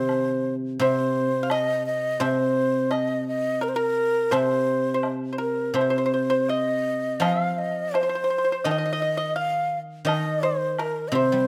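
A breathy, end-blown xiao carries the wistful, graceful melody up front with vibrato and tongued notes, while a mellow, dry pipa plays a second line, a ringing, silvery guzheng accompanies low, and a background woodblock with dark cymbals adds soft percussion through this rubato Chinese chamber excerpt, heard close and detailed in light reverb.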